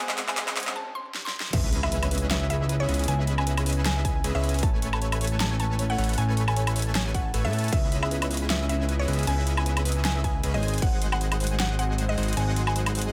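Pulsing in half-time at 155 BPM with a 16th-note swing, this emotional, lush future bass passage in C# minor opens with a short build-up: a riser and drum fills over a G#7 chord, then a brief break. The drop lands at 1.5 seconds with an impact, a punchy electronic kick and a fat, saturated analog bass that sits up front and pumps with the sidechain. The big-room dance kit brings a huge snare, metallic hats, handclaps, crash cymbal and woodblock, while a dense, compressed supersaw riff also pumps. A woody, bright mallet-like pluck carries the melody through chorus, delay and pumping, and a mellow, gentle pluck plays arpeggios in the background with the same treatment. Very quiet, dark strings hold sustained chords beneath as the harmony moves through C#m7, Amaj7, C#m7 again and back to G#7, and the mix carries light reverb.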